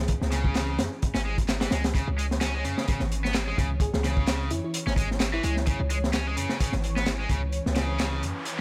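A swirling, detuned analog pad with phaser, chorus and sidechain pumping sits in the background over a deep, boomy 808-style bass, as a crunchy, gritty breakbeat kit with a punchy kick and high-tuned snare drives this swaggering, energetic swung breakbeat excerpt up front, joined by tape-toned electronic handclaps. A bright, overdriven stack guitar picks a riff through tube saturation and dub echo, while a bell-like FM electric piano with a sparkling, telephone-filtered tone plays a short melody from 3.8 to 5.8 seconds. An electronic noise sweep closes the passage at 8.2 seconds.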